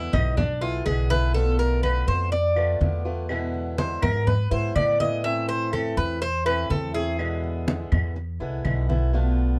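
Latin music in the Cuban son and guajira vein, sultry and danceable, heard as an excerpt in a close, dry and detailed sound. The Cuban tres leads up front with picked arpeggios on metallic double strings, some doubled at the octave, until it stops at 8.1 seconds, while an equally prominent upright bass plays a dark, woody, thumpy pizzicato line on gut strings. Beneath them a boxy fingerpicked swing-style acoustic guitar with fresh strings and audible finger squeak sits low in the mix, low-tuned congas add thick-skinned warmth under soft hands, and distant claves sound in the background.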